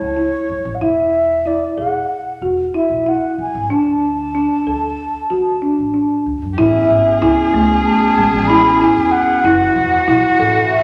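A mellow, airy baroque flute carries the melody up front over soft-mallet folk marimba arpeggios and a woody, thumpy pizzicato upright bass in this hopeful, playful contemporary chamber excerpt in 9/8 at 188 BPM in A major, with a nasal, bowed cello entering at 6.5 seconds and a soft-attack background woodwind section adding sustained chords from 6.6 seconds, all in a wet recital-hall reverb.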